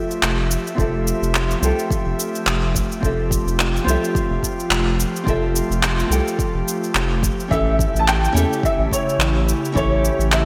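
Fingerpicked nylon-string guitar with a filter sweep and a breathy, detuned pad with shimmer reverb open this sunny, relaxed sunset chillout cut from a longer piece at 107 BPM in F major, soon joined by up-front electronic cabasa and handclaps with gated reverb, a round, dark analog bass, and a deep, tape-warm electronic kick, all swinging gently over Fmaj9 until a boxy baby grand piano melody with chorus and delay arrives at 7.5 seconds on an A7, the whole set in a lush hall with bright 1980s-style digital sheen.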